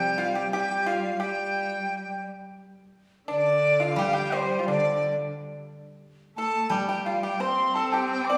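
A breathy, mellow dizi leads this short excerpt of Chinese traditional chamber music, its bamboo tone carrying a buzzing membrane, straight and tongued, with rolled-off highs and a slightly unsteady, up-front presence. The mood is festive yet pastoral, moving in a rubato 2/4 around 87 BPM in the G shang mode. Beneath the melody, a clear, smooth cello from a single bowed player sits close, its vibrato even, while a dry, percussive pipa played with fingerpicks adds a second line in the middle register. A bright, silvery steel-string zither rings in the background, sounding briefly at the opening and returning at 4.0 seconds to accompany through to the end at 8.4 seconds. The ensemble is heard in a wet recital-hall acoustic with a reverb time of about 1.7 seconds, suggesting a church or concert hall setting.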